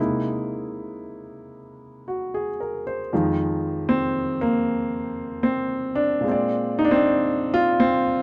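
Dark, warm and lightly reverberant, this short cut from a longer solo jazz piece features a warm, natural, up-front baby grand piano playing alone for its full 8.2 seconds at a relaxed 77 BPM in 4/4 with swung eighths, moving through C7alt, Fm7 and Bb9 with a warm, easy mood.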